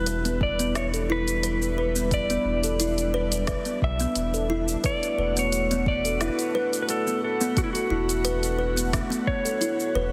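A clean, up-front lap steel guitar carries a slide melody through delay and shimmer reverb in this mystical, earthy organic downtempo excerpt at 88 BPM in E dorian, moving from Em7 to D/E at 4.8 seconds over a light sixteenth-note swing. A woody kalimba plucks arpeggios through tape echo, a smooth, detuned analog pad holds chorused chords with sidechain pumping, and a round sine sub bass sits low. Electronic drums add a woody snare, smooth hi-hats, cabasa and a deep kick, all set in a lush hall reverb with a heavily compressed, radio-like sound.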